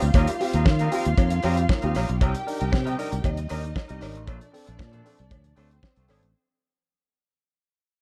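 A straight 4/4 disco groove at 116 BPM drives this sultry, dark excerpt, built on a damped 70s drum kit with a fat snare and tight kick up front, a growly fingered electric bass, a clean semi-hollow guitar and a mellow baby grand piano comping through Eb6, Cm7 and Bbmaj7, lush bowed strings with vibrato carrying a woody second line, and a saturated cowbell from 0.2 seconds tucked in the background, all in a small room and fading out across its 6.3 seconds.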